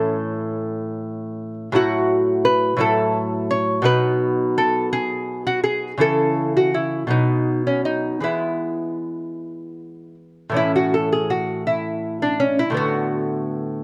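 A bright, delicate lute plays alone and sits up front, its fingerpicked double nylon strings, some doubled at the octave, giving each note a shimmering edge across a range from low A2 to C#5. This is a classical, baroque-style dance in a lilting 6/8, taken with a rubato feel that lends it a radiant, flowing mood. Light reverb surrounds the instrument, and at 10.6 seconds the harmony settles into a new key before this short cut from a longer piece ends at 13.8 seconds.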